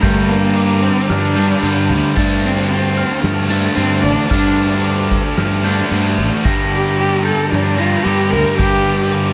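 Melancholic and brooding, this post-rock excerpt in G minor moves at 112 BPM in a straight 4/4, led by a dark, expressive bowed cello melody with vibrato and portamento, bathed in plate reverb and digital delay, over lush, very quiet symphonic strings holding sustained chords, a ringing, bell-like glockenspiel playing delayed arpeggios in the background, two overdriven electric guitars picking riffs behind (one compressed and phased), a round, fuzzy fingered electric bass, and a soft-mallet drum kit with a fat snare, boomy kick and dark crash and ride cymbals, all moving from Gm to Dm7 at 2.2 seconds and back to Gm at 6.4 seconds in a small room with light reverb.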